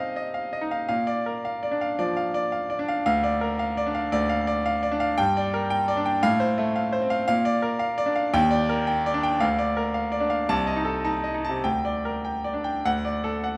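Agitated and stormy, this virtuoso classical piano study at 112 BPM in 4/4 moves with a free rubato feel. A brilliant, up-front grand piano spans C2 to A5 in a wet recital-hall reverb, and the music shifts from Bb major into G minor at 5.2 seconds before closing this cut from a longer piece on a D chord.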